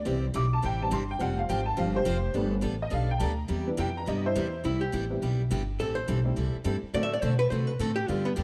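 A jangly, detuned honky-tonk upright piano takes the lead in this swinging, playful western swing cut, carried by a thumpy, up-front pizzicato upright bass and a bright, full-bodied picked dreadnought acoustic guitar. At 4.7 seconds a clean, compressed hollow-body archtop guitar steps forward to take over the solo from the piano, its dark electric tone sitting close and present. Light reverb surrounds the band, and lossy compression artefacts colour the sound of this brief fragment of a longer piece.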